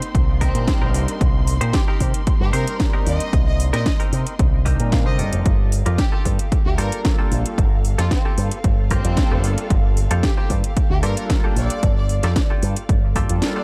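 An echo-heavy digital ambience wraps this groovy, sensual nu-disco excerpt in C dorian at 113 BPM, where a punchy, overdriven electronic kick and a house kit of cracking snare and metallic hats join a picked bass with an envelope filter, while a bright, twangy clean electric guitar riff with lush chorus and dub echo adds a fill at 4.4 seconds, a rich violin section carries the melody, and a bowed string section and detuned sawtooth pad pump with sidechain in the background as Cm7 moves to Gm9 at 5.2 seconds.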